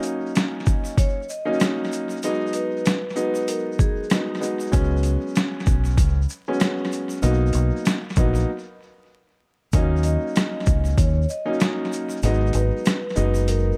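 A gritty, overdriven sampler-style boom-bap kit with a thumpy kick and pitched-down, compressed snare and hats sits up front in this moody, reflective hip-hop piece at 96 BPM in Eb minor, swung on the 16ths and colored by tape echo, vinyl crackle and a small room. A dark concert grand piano carries the Ebm7 to Abm7 to Db7sus4 to Bmaj7 accompaniment with audible action noise, a ringing vibraphone with soft mallets and slow motor vibrato floats a mellow, echoed melody until 4.3 seconds and returns at 10.0 seconds, and a grainy tube shaker ticks in the background. A round, punchy fingered electric bass enters at 4.7 seconds to anchor the low end through the close of this excerpt.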